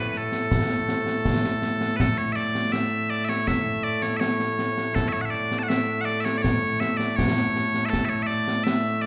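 Scottish pipe music in a ceremonial, proud mood, moving at 81 BPM in 2/4 in A major, cut from a longer piece. Loud, bright bagpipes carry the melody from the start, piercing and continuous, up front, spanning A2 to A5, while concert snare and bass drum join at 0.1 seconds with bright cymbals and an acoustic, small-room character. The whole sits in a wet recital hall reverb of a church or concert hall, with a new section arriving at 2.0 seconds.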